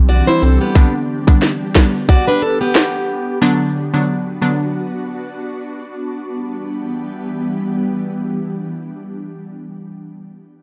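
A swung sixteenth-note dancehall groove opens this hypnotic, sultry fragment, driven by an overdriven electronic drum kit with a tight kick, sharp snare, rim click and crisp hats that drops out at 2.9 seconds, while a deep sine-and-triangle sub bass with an octave sounds only briefly at the start. A boxy, picked parlour-style steel-string acoustic guitar plays arpeggios up front until 3.4 seconds, joined at 0.8 seconds by a glassy, crystalline wavetable pluck with detuning, chorus and a filter sweep. Beneath them an ethereal, airy pad holds mellow sustained chords through Cadd9, G, Bm and Em7, coloured by ensemble chorus, phaser, built-in reverb and sidechain pumping, in a dry, gritty overall sound.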